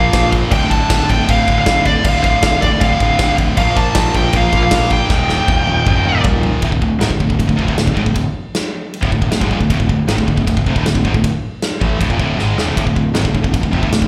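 Heavy metal at 157 BPM in a straight 4/4, this dark, relentless passage in D phrygian is cut from a longer piece and heard as a live gig through the venue's PA, with a touch of club reverb. A high-gain lead guitar carries the melody between D5 and A5 for the opening 6.2 seconds, its warm distorted tone trailed by slapback echo and digital delay. Underneath, a double-tracked, high-gain rhythm guitar drives a bright, distorted riff in the low register with slapback echo of its own, while an overdriven picked bass, direct and amped, adds a growly bottom from D1 to Bb1. The big acoustic drum kit sits up front with a punchy kick, medium-tuned snare, toms and bright crash and ride cymbals, firing fills from 5.1 to 6.6 seconds and again near 12.4 seconds. The harmony moves through Bb5, Dm and Eb before the second section lands on D5 at 6.6 seconds, where the riff, bass and drums press on to the end.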